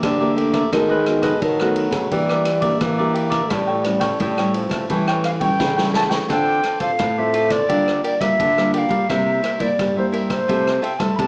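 A nostalgic, yearning blend of samba and choro in D minor moves at 86 BPM in a straight 4/4, heard here as a short cut from a longer piece. At the outset a raspy, growling trombone carries a second line in a vintage jazz style over a crisp picked cavaquinho, a fingerpicked nylon-string guitar with fresh strings and audible finger squeak, and a second nylon-string guitar thumb-plucking the bass. Behind them sits a distant, roomy big-band drum kit with a boomy kick, medium-tuned snare, rim click and ride cymbal, its top rolled off, and a drum fill runs from 5.6 to 6.3 seconds as the trombone drops out. A bright, airy wooden flute enters at 5.2 seconds with a straight, tongued tone, close-miked and up front, taking the melody expressively into the second section. The harmony moves through half-diminished and dominant chords before settling on Dm7 and moving toward Fmaj9/C, all wrapped in wet studio reverb with a small-speaker character.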